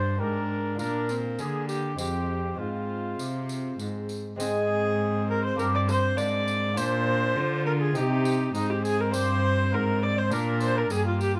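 Closely miked with light reverb, this solemn, rustic excerpt of a renaissance-style consort dance in F dorian moves at a straight 101 BPM in 4/4. A rich, up-front bowed cello carries the bass beneath a reedy gut-string viola playing the second line with light vibrato, while a smooth-topped second viola fills in the accompaniment. A delicate, fingerpicked, double-strung lute and a warm cornet melody sit in the background, and a jingly, bright tambourine joins at 0.8 s.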